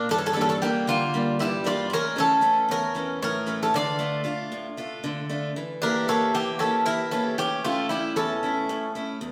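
A Greek bouzouki carries the melody up front, its metallic double strings ringing from E4 to D5, while a second bouzouki plays a lower line beneath it and a bright, picked acoustic archtop guitar drives the accompaniment from E2 to G4. This moody, bittersweet Greek folk band piece moves at 230 BPM in eighths in 7/8, passing through Gm, A and Dm before shifting to Edim at 5.6 seconds and back to A at 7.4 seconds. The players sound live together in one room, wrapped in a stone reverb, and the piece is cut from a longer performance.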